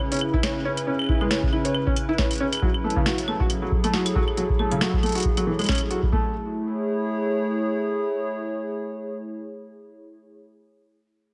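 A hollow, flute-like pad stands up front in this playful, wistful IDM excerpt, holding sustained chords with a slow attack, a noise layer and chorus from the start until 10.4 seconds. The piece runs at 137 BPM in 4/4 with a 56% swing on the sixteenths, in A major and tuned to A4 = 435 Hz. A felt-muted upright piano plays mellow, intimate arpeggios through a low-pass filter and digital delay, with its action noise audible. A booming analog drum machine supplies a crisp snare, metallic hi-hats and claves with delay, while a dry, deep electronic kick drum sits prominently in the mix. The harmony moves from C#m7 to F#m9, and the second section turns to Amaj7 at 6.1 seconds; after the piano and drums fall away by 6.3 seconds, the pad carries on alone, framed by light reverb and digital ambience.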